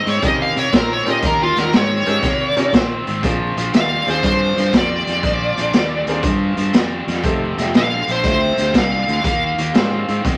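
Soulful and rollicking, this electric blues shuffle swings in 4/4, cut from a longer piece. A smooth, overdriven lead guitar sits up front and solos across the whole passage, its bright, picked tone singing over chords that move from Eb9 to Bb9 at 3.2 seconds and on to F9 at 7.2 seconds. Beneath it, a second overdriven guitar digs into a low riff while a fingered electric bass, direct and amped, holds down the bottom. The raw garage drum kit of hi-hat, boomy kick and medium-tuned snare sounds saturated and gritty, pumping in a small room with a rolled-off top. A clear upright piano adds woody, vintage accompaniment in the middle register, and moderate studio reverb plus a layer of vinyl crackle give the whole recording an aged, lived-in feel.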